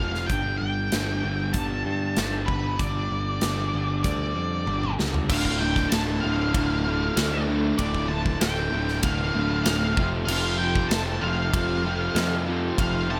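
A dry, close-sounding mix opens this brooding, driving classic rock excerpt in D minor, moving at 96 BPM in a straight 4/4. A fuzzed lead guitar carries the melody high in its range, its distortion trailed by a digital delay, while a raw garage guitar sits in the background grinding out an overdriven riff low on the neck. Up front, a bright, growly picked electric bass holds down the bottom, and a big rock drum kit features a punchy kick, medium-tuned snare, sparkling cymbals, hi-hat, ride and toms, recorded in a big room. A drum fill at 4.7 seconds leads into the second section at 5.3 seconds, where a second overdriven garage guitar riff joins and a very quiet tonewheel organ adds piping, scooped sustained chords with key click and fast rotary speaker. The harmony settles on D minor there before moving to F at 10.0 seconds.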